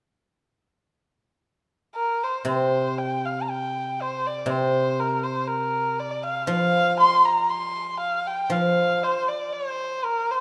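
Pastoral and festive, this Chinese traditional chamber music moves at a rubato 59 BPM in 2/4 in the C shang mode; a single dark, woody erhu enters up front at 2.0 s, bowing the melody with light vibrato and portamento, and at 2.4 s a bright, silvery guzheng played with fingerpicks joins, also up front, adding a ringing low accompaniment, both heard in a moderate recital-hall reverb.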